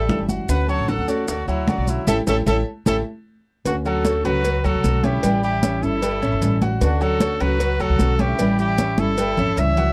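A roomy, punchy trumpet carries the melody up front from the start, with a lush bowed violin section behind it, brilliant grand piano arpeggios whose action noise is audible, and a woody pizzicato upright bass. This relaxed, danceable Cuban son and guajira excerpt also has a dark, full-bodied, thumb-plucked nylon-string guitar, bright congas played with soft hands, round low-tuned bongos and cowbell, and grainy maracas. Drum fills arrive at 2.1 and 9.0 seconds, the first paired with a band accent, over a Dmaj7 and A7 progression in a dry, close 1970s-style studio sound with light reverb.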